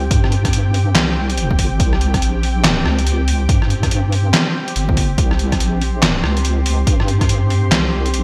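A half-time 4/4 groove at 142 BPM with swung 16ths drives this brooding, dark deep dubstep fragment. A punchy, overdriven electronic kick runs from 0.1 to 7.3 seconds beside a muffled, pitched-down, sampler-style trip hop kit of handclaps, hi-hat, rim click and a medium-tuned snare, set up front with gated reverb. Beneath them sits a detuned square-and-sine wobble bass with chorus, while a moody, full-bodied sawtooth pad with slow attack, chorus and built-in reverb sustains a C5 chord, all in a bright 1980s-style digital production with light reverb.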